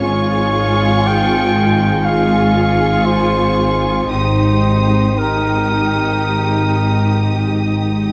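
Cinematic, uplifting and moving, this rubato passage sets a focused, vibrato-laden high violin melody above a dark, roomy solo cor anglais line that sits up front until 7.3 seconds, while a soft-attack second violin section, smooth violas, and even cellos and double basses form a lush, bowed foundation as the harmony moves from Db/Ab to Eb/Ab at 4.1 seconds within a moderate scoring-stage reverb.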